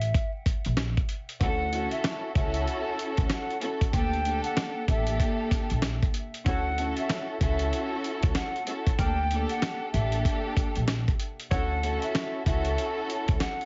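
A gritty, sampler-style drum kit sits up front in this nostalgic, confident boom-bap hip-hop excerpt, its thumpy kick, medium-tuned snare and hi-hat sounding compressed and re-recorded in a small room, with a swung sixteenth-note feel. Pizzicato upright bass on gut strings adds a woody, dark low end, while a breathy, hollow metal jazz flute carries the melody up high with a soft attack, filtering and delay. After a short opening break, a lush bowed string section enters at 1.4 seconds, close and warm with vibrato, moving between major-seventh and minor-add-nine chords. From 6.5 to 11.7 seconds a mellow, vintage horn section adds loose, filtered stabs with delay, set in the background. The mix carries a heavily compressed radio sound with vinyl crackle, light reverb and rolled-off highs, giving it a dusty, worn cast.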